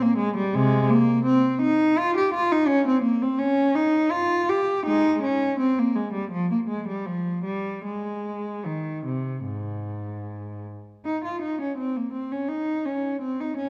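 A single bowed cello opens this short excerpt, playing alone and placed up front in a classical, baroque-style suite movement for unaccompanied cello. The mood is grave yet flowing, with a free, rubato feel over a four-beat metre. The player's tone is rich and focused, with a smooth top and vibrato, ranging from Ab2 up to G4. A wet recital-hall reverb surrounds the instrument, giving each phrase a resonant tail. Around 11.1 seconds the music moves into a new section, which runs until the passage is cut off at 13.7 seconds.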